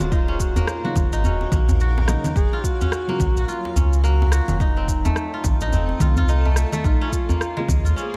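A dark duduk carries the solo melody in a folk style, its soft attack, scooped notes and vibrato softened by a smooth top and trailed by digital delay. Beneath it, a crisp, ringing, fingerpicked kora spins arpeggios through its own delay, while a granular cloud pad sits in the background with blurred, detuned unison chords whose moving notch and built-in reverb keep them evolving and cloudy. A round, sine-like sub bass with a fast attack anchors the low end and, like the pad, pumps against the sidechain. The groove is swung organic downtempo: a punchy, overdriven electronic kick and layered electronic congas, shaker and rim click share that gritty overdrive, while a deep acoustic djembe recorded in a small room sits further back. From 0.8 s a felt-muted upright piano adds intimate, thick-felt accompaniment with audible action noise, pumping and echoing under delay, as the harmony moves through Ebm7, Gbmaj7, F7 and Bbm7. 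Bathed in studio reverb, this fragment of a longer piece feels hypnotic and meditative.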